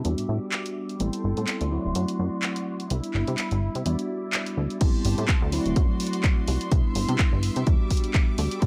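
Sensual and funky, this short cut of filtered disco house moves at 126 BPM in 4/4 with a 16th-note swing, as a plucky, saturated analog bass sits up front beside a mellow tine electric piano with phaser and a clear, bowed string section with light vibrato, all three filtered and pumping against the sidechain over a cycle of Em7, Am7, D7 and Cmaj7. A punchy analog drum machine supplies handclaps, hi-hat and crash cymbal, its hats and cymbals pumping too, while a filter sweep builds through the opening seconds. At 4.8 s the drop arrives and a layered, punchy electronic kick enters, all set in a light reverb.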